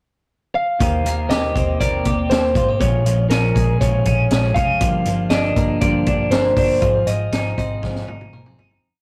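Bright and breezy, this short piece of jangly indie pop moves at 120 BPM in a straight 4/4 in Eb major, opening with a brief pickup bar before a lightly driven lead guitar, dark and slightly broken-up, sets out a motif-based melody of song-like phrases from 0.6 seconds. Underneath, a twelve-string electric guitar rings out bright, twangy and compressed in a fingerpicked roll pattern, while a hollow-bodied semi-hollow electric guitar sits in the background strumming eighths in open chord shapes. A vintage muted picked bass, round and foam-muted, drives eighth notes with slides. The vintage drum kit sits up front with a punchy kick, high-tuned snare and rolled-off top, playing a brisk indie backbeat and closing with a fill that starts at 7.8 seconds. The verse cycles through Eb6, Bbm7, Gm7 and Ab6, and a fade-out begins at 6.8 seconds, all captured in a rough rehearsal-room sound with tube saturation and a small room reverb.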